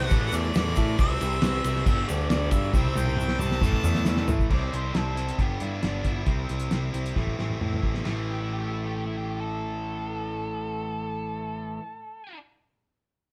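Gritty and swaggering, this classic rock excerpt drives along at 136 BPM in a straight 4/4, centred on A minor and played live by a band in one room with moderate reverb. A distant, roomy harmonica carries the opening melody with a light vibrato until 4.3 s, over three overdriven electric guitars: a cranked stack guitar, a raw garage guitar sitting in the background, and a double-tracked crunchy guitar with a phaser that drops out at 4.5 s. A growly, up-front picked bass anchors the low end, while a cloth-damped, thuddy drum kit with dark cymbals, a fat snare and a tight kick plays through to 8.2 s, adding fills along the way, and a grainy egg shaker ticks quietly behind the opening. At 4.5 s an octave-fuzz lead guitar enters on the second line with a dark, distorted tone that carries past the rest of the band to the end. The chords move among A, C and G, mixing power chords with full chords, before settling on A minor and returning to A.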